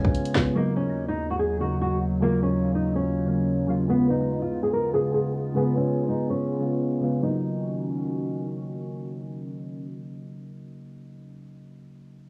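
A cassette-worn home recording with small-room ambience and light reverb frames this dark, ominous drill excerpt in Eb minor at 144 BPM, felt in half-time, with a filter sweep running over the first section. An up-front electronic drum kit with a hard-clipped kick, sharp snare, handclaps and hi-hat hits only for the first 0.5 seconds. From the start, a bright, fingerpicked classical nylon-string guitar carries the melody through tape echo until 8.4 seconds, over round, gentle electric-piano-like synth keys with chorus and a detuned, warbling, nostalgic lo-fi pad holding slow-attack chords that move between Db7 and Ebm7.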